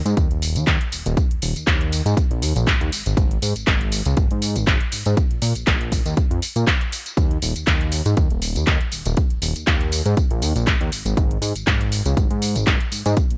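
Sensual and groovy, this filtered disco house excerpt moves at 120 BPM in 4/4 with a 16th-note swing, cut from a longer piece. A fat, detuned sawtooth bass with a fast attack and decaying notes pumps under sidechain compression while a filter sweep runs across it the whole way, and a punchy, tape-warm electronic kick sits up front with studio reverb. A layered house kit of handclaps, metallic hi-hats and tambourine pumps along with its own reverb inside a digital ambience.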